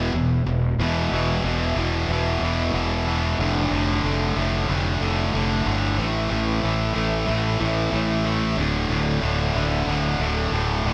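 Post-rock with a cathartic, cinematic mood, this short cut from a longer piece sets a double-tracked, overdriven electric guitar riff up front, bright and picked, over a fuzz-laden fingered bass that sounds growly and punchy. Both parts play from the start through 10.9 seconds, moving through chords from E5 to Dm/F, A5 and D5. A lush hall reverb gives the whole recording a big arena sound.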